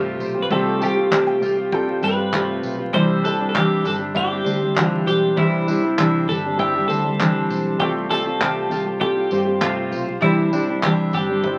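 A straight, easy-going 4/4 at 99 BPM carries this sunny acoustic pop fragment in C major, with a cloth-damped, thuddy drum kit of tight kick, tambourine and handclaps joining at 0.2 s under a dark, round, foam-muted electric bass. Up front, a bright, twangy, compressed twelve-string electric guitar carries the melody over a full-bodied fingerpicked jumbo acoustic guitar with fresh strings, while a double-strung bowl-back mandolin adds arpeggios and a polished grand piano sits in the background. The chords move between Fadd9 and Cadd9, all bathed in wet studio ambience and the crackle of a very old 78 rpm record.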